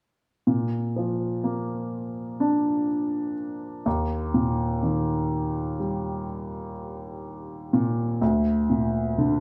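A polished concert grand piano with a deep, present low end enters at 0.5 s and plays a tender, emotional pop accompaniment up front, framed by moderate large-studio reverb, until 9.4 s in this brief cut from a longer piece.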